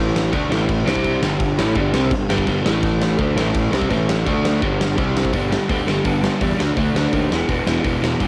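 A straight, driving 4/4 propels this rowdy, energetic punk rock fragment, where a bright, double-tracked overdriven guitar riff churns through power chords over a growly fuzz bass, joined at 0.2 seconds by an up-front acoustic drum kit with a punchy kick, fat snare and bright cymbals, all caught with light reverb on a home cassette recording that shifts into a new section at 5.3 seconds.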